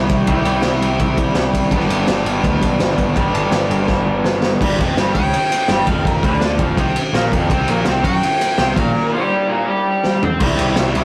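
A straight 4/4 pulse at 166 BPM drives this swaggering, rowdy garage rock excerpt in G mixolydian, cut from a longer piece. An up-front, double-tracked raw guitar grinds out the overdriven picked riff from the start, alongside a growling picked electric bass with its own bright, amped overdrive, while a crunchy breakbeat kit enters at 0.1 s with a tight kick, medium-tuned snare, toms, and dark, rolled-off crash and ride cymbals that pump and saturate in the room. The chords move from C to G, and a drum fill at 3.9 s hands off to the second section, where a clear harmonica takes a solo from 5.1 s to 9.3 s, its light vibrato and scooped notes carrying a smooth top through a touch of overdrive. Underneath, the harmony shifts through G5 and C5 before another short fill near 10.0 s returns to C. The whole take sounds like a rough rehearsal-room recording, gritty with saturation and soaked in a stone room reverb.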